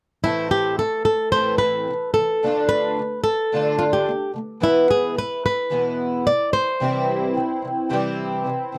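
A dry, close 1970s-style studio sound with light reverb frames this wistful, tender pop excerpt in A minor at 110 BPM, where a bright, fingerpicked flamenco guitar carries the melody up front over a dark, shimmering, octave-doubled twelve-string acoustic guitar, double-tracked with audible finger squeak, moving through Am, Dm, E and C.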